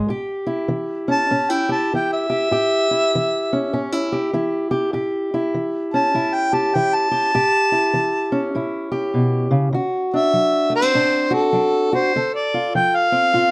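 Laid-back and gritty, this acoustic country blues fragment swings at 100 BPM in 4/4, sitting in A mixolydian and moving from A7 to D7 at 9.7 seconds and on to Dm7 at 12.1 seconds. A dark, boxy, parlour-style steel-string acoustic guitar is fingerpicked up front from the start, with audible finger squeak. At 1.1 seconds a mellow harmonica enters to carry the melody, playing a jazz-flavoured solo with light vibrato and a smooth top, also up front, and light reverb sits over the whole recording.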